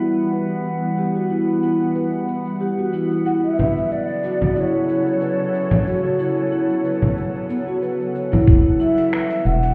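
A soft-mallet marimba plays mellow, round arpeggios through a filter sweep and digital delay, over a bright, string-like bowed drone that pumps gently and is also swept, with a quiet, overdriven deep house kit of finger snaps, metallic hi-hat and shaker, and a glassy texture of drifting overtones hovering in the background. A breathy, expressive ney carries the melody from 3.3 seconds, and a deep, close frame drum played with hard hands enters at 3.6 seconds. At 8.5 seconds a dark, pumping analog bass and a single gritty, thumpy electronic kick arrive, all heard in this hypnotic organic downtempo fragment as if muffled through a wall in a stone room.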